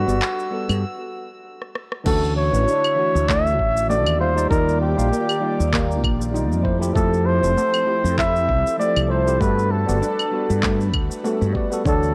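Blissful and sunny, this sunset chillout excerpt puts a mellow, scooped jazz flugelhorn with digital delay up front over bright tine electric piano, a breathy, airy pad with chorus and phaser, and a round, punchy fretless electric bass, while a glassy harmonics texture drifts briefly at the start, a produced R&B kit of claves, crash cymbal, handclaps, rim click and shaker enters at 0.1 seconds, and a shimmering steel pan and knocking electronic kick join at 2.1 seconds after a short break and drum fill, the mix carrying light reverb and the warbly pitch drift of worn cassette tape.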